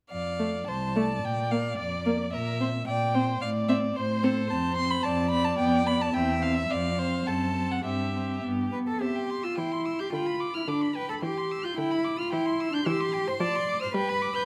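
Lively and cheerful, this fragment of a quick classical-period string quartet movement moves with a flexible, rubato feel: a rich, smooth first violin carries the melody over a focused second violin line with vibrato, a dark, expressive viola accompaniment with portamento enters at 0.4 s, and an intimate, up-front cello bass is played sul tasto with an airy bow, the quartet heard through close, detailed microphones in a moderate recital hall reverb.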